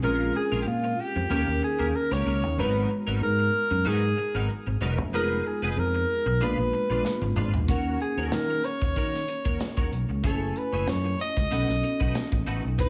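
Breezy and upbeat, this short cut of polished 1980s jazz-funk pop moves at 94 BPM in B major with a light sixteenth-note swing. A breathy alto saxophone carries the melody up front, its subtone voice touched with tape echo and a vintage jazz flavor. Beneath it, a mellow tine electric piano supplies accompaniment through a lush chorus, while a bright, twangy twelve-string electric guitar plays a compressed, picked riff shimmering with ensemble chorus. A round, dark fingered electric bass anchors the low end from the start, and the modern studio drum kit enters at 7.0 seconds with a fill, bringing a punchy kick, medium-tuned snare, hi-hat and toms bathed in gated reverb. The harmony drifts through rich chords such as G#m9, A#7b9 and F#m9 before settling on B7, all set in a small room with light reverb.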